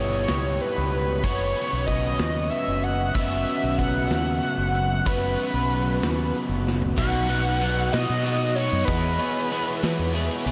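A gritty, screaming synth lead with vibrato, distortion and tape echo carries the melody up front in this upbeat, jangly indie rock excerpt, set in B major at 63 BPM in 6/8. A bright, double-tracked overdriven electric guitar with lush chorus plays the riff over a round, dark fretless bass, while a big acoustic rock kit with a punchy kick enters at 0.3 seconds. A drum fill at 6.7 seconds leads into a new section at 7.0 seconds, and a huge ambient reverb soaks the whole mix in a dreamy haze.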